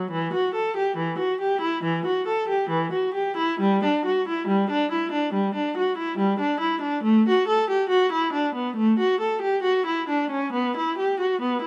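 Close, detailed microphones and a light reverb put a solo viola up front, catching every nuance of a single bowed instrument. This is a classical, baroque-style suite movement with a dance-like yet serene character, moving in a four-beat metre shaped by an expressive rubato. The viola's tone is focused and warm, with a smooth top and a vibrato that keeps the line singing. It ranges from E3 up to A4 and plays on its own for the full 11.7 seconds of this short cut from a longer piece.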